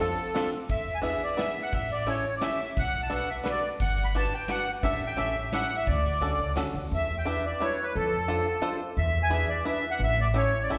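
A reedy, sweet accordion carries the melody up front in this charming, nostalgic musette waltz, its light tremolo tuning colored by plate reverb and a slapback echo. Beside it, a twangy, percussive bluegrass banjo played with fingerpicks supplies accompaniment, sharing the same plate reverb and slapback. Underneath, a woody, dark pizzicato upright bass with gut strings gives a thumpy foundation, while a soft brush drum kit with a punchy kick, medium-tuned snare and ride cymbal plays until 6.6 seconds, after which the other three parts carry on alone. The harmony moves through jazzy sixth and seventh chords such as F6, Bm7, Gmaj7, A7sus4 and Dmaj7, with the opening passage returning at 6.9 seconds. It sounds like a live gig heard through a venue's PA, set in a moderate club reverb with a recital-hall air and a top end cut off above 7.6 kHz, cut from a longer piece.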